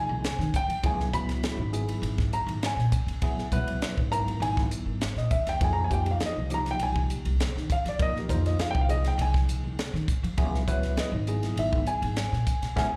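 A mellow, worn grand piano with audible action noise and slapback echo solos through this intense, funky electric jazz fusion excerpt at 101 BPM, over a slightly out-of-tune tine electric piano colored by overdrive, phaser and slapback echo, a woody, growly pizzicato upright bass, and a crisp, up-front drum kit with a punchy kick, high-tuned snare and dark cymbals, all moving through Fm7, Dbm7, Fm9 and Dbm9 in the reverberant sound of a live club PA before a band accent at 12.8 seconds.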